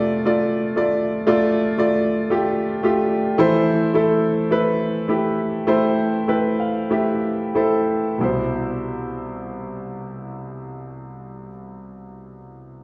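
Heard in a reverberant church or concert hall, the recording sits in a wet recital-hall reverb, with the clear, vintage grand piano up front in a tender, hopeful pop passage in C major, at a slow 45-60 BPM in 4/4, cut from a longer piece. The piano plays accompaniment across the full 12.8 seconds, spanning C2 to G5 and moving from F6 to Am/E. The tempo slows over the first 8.2 seconds, and a piano fill from 5.7 s leads into a Cmaj7 at 8.2 s.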